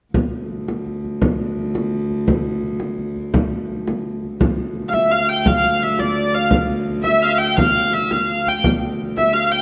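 A straight 6/8 pulse at 113 beats per minute, counted in dotted quarters, drives this short medieval dance cut from a longer piece, setting a driving, ancient mood in D minor with tuning at A4 = 436 Hz. From 0.1 seconds a deep, large frame drum sits up front, played with soft hands, its acoustic sound compressed and saturated, while a clear viola da gamba holds a low D drone beneath it, bowed on fretted strings with a soft attack, light vibrato and a pure, floating, ringing tone. At 4.9 seconds, as the second section gets underway, a dark hurdy-gurdy takes the melody up front between D5 and G5, its wheel-bowed, keyed voice nasal and reedy yet smooth on top. The drum stops at 9.3 seconds, leaving the drone and melody to close the passage. Everything sits in a wet scoring-stage reverb, and lossy compression artefacts colour the sound.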